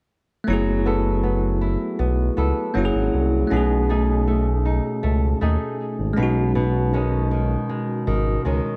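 A smooth synth bass sits up front in this contemporary R&B excerpt, its sawtooth and triangle tone sustained and mellow, colored by ring modulation and vibrato, setting a longing, late-night mood. The tempo is 79 BPM in a straight 4/4, in F# dorian. A dark, fingerpicked flamenco guitar plays acoustic arpeggios through a digital delay, sharing the foreground with the bass. A bell-like tine electric piano adds clean, direct accompaniment from 0.4 seconds, just before the guitar and bass come in at 0.5 seconds. The harmony moves from F#m11 to F#9, then to B13 and B69, while light reverb lends a small room ambience and the whole track carries the worn, warbling pitch drift of old cassette tape.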